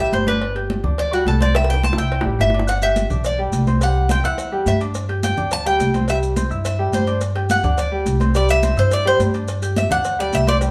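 Festive and danceable, this salsa fragment puts a metallic, double-strung Cuban tres soloing up front over a clear, intimate grand piano with audible action noise, a woody, thumpy pizzicato upright bass, thick-skinned high-tuned congas played with soft hands, tight cowbell and bongos in the background, and grainy maracas that join at 2.7 s after a drum fill, the whole live band sitting in a wet large-studio reverb as the harmony moves between C and G.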